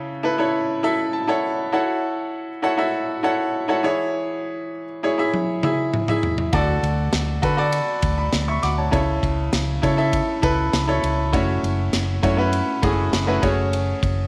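Set in light reverb and a touch of studio ambience, this bittersweet, dramatic piano-driven pop cut from a longer piece moves at 100 BPM in a straight 4/4, sitting in F# minor with a tuning of A4 = 441 Hz. A clear, woody upright piano sits up front and carries the accompaniment throughout, with its natural tone spanning C#3 to D6 and a short fill early on, over chords that move from A/C# through F#m7 and C#m/E. The acoustic studio drum kit arrives at 5.3 seconds with a fill built from kick, snare, toms and ride cymbal, its mid-forward sound marked by a medium-tuned snare, a punchy kick and a rolled-off top. At 6.5 seconds, as the harmony shifts to D, a vintage fingered electric bass joins, its dark, amped, foam-muted tone staying round between F#1 and D3. The progression returns to A/C# and F#m7 before settling on F#madd9 as the passage ends at 14.3 seconds.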